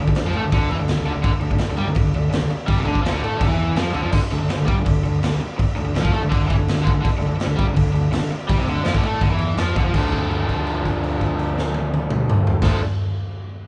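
A raw, menacing garage rock cut opens with a bright, overdriven, double-tracked guitar riff in D minor, moving at 166 BPM with a straight 4/4 feel. Up front, the drum kit hits with a punchy kick, medium-tuned snare, toms and crash, sounding saturated and gritty in a pumping stone room with a rolled-off top. Beneath them sits a fuzzy fingered electric bass, all under light reverb and the dulled haze of cassette tape, and the excerpt closes on a note held from 9.9 to 12.6 seconds.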